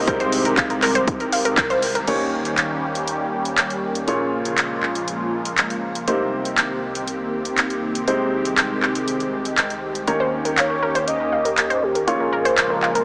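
Progressive house at 120 BPM in 4/4, this bittersweet, emotional passage is cut from a longer piece and moves through Abmaj7/C, Eb7, Bbm7 and Cm7 under a huge ambient reverb and a small-speaker sound. A thick, airy unison pad holds sustained chords up front, colored by chorus and phaser, while a felt-muted upright piano adds soft, intimate stabs with audible action noise and dub echo. Deep in the background, a dark, rumbling detuned saw bass sustains low notes. A lush, punchy unison pluck plays arpeggios through a filter sweep at the start, then returns from 10.1 seconds. A tape-warm house drum kit with crash cymbal, handclaps and warm hats sits up front, and a layered, punchy electronic kick plays only briefly at the opening. A very quiet sub drop marks an impact at 2.1 seconds, and from 10.6 seconds a velvety, smooth synth lead with vibrato, chorus and dub echo carries the melody, as the pad, piano, bass, pluck and lead all pump with the sidechain.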